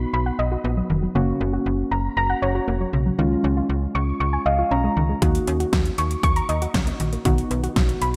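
A straight 4/4 pulse carries this nocturnal, driving synth-pop excerpt, where dark, muted felt-like synth keys with chorus and a snappy slap-like FM bass play throughout alongside a soft, round plucked arpeggio treated with chorus and delay; the keys add a fill at 4.2 s before an overdriven pop drum kit with a punchy kick, metallic hats, a fat snare and gated reverb enters at 5.2 s, the whole piece bathed in a lush hall and a bright 1980s-style digital sheen.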